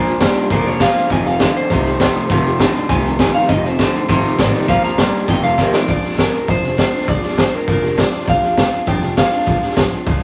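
Retro and rollicking, this rockabilly piece charges along at 201 BPM in a straight 4/4 over Bb7 and F7 changes, carried by a punchy, gritty drum kit with a high-tuned snare sitting up front in a small room. A bright, twangy, slightly broken-up electric guitar plays a clean solo melody while a second, compressed, lo-fi electric guitar holds down a low riff until 5.9 seconds, just after a drum fill at 5.6 seconds. Behind them, a full-bodied steel-string acoustic guitar picks out accompaniment and a woody, thumpy upright bass plucks the low end, all under a light reverb.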